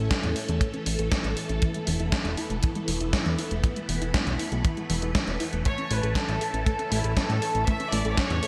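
Italo disco in A major at 119 BPM, this short cut from a longer piece has a playful, danceable lift in a straight 4/4. A swirling, warbling string machine holds sustained chords through ensemble chorus and phaser, while a soft, round pluck spins arpeggios in the background, colored by chorus, cassette-tape grit and delay, with a filter sweep running across the whole span. Underneath, a fat, thick analog bass with tube saturation sits up front beside a dry, tight acoustic kick and a sampler-style 80s drum machine whose hi-hat and snare carry gated reverb. The harmony moves from A to Esus4 at 1.6 seconds and back to A at 5.7 seconds, where a dark, reedy violin section enters with light vibrato and a gut-string, period-style tone. The bright 1980s digital production sets everything in a lush hall reverb.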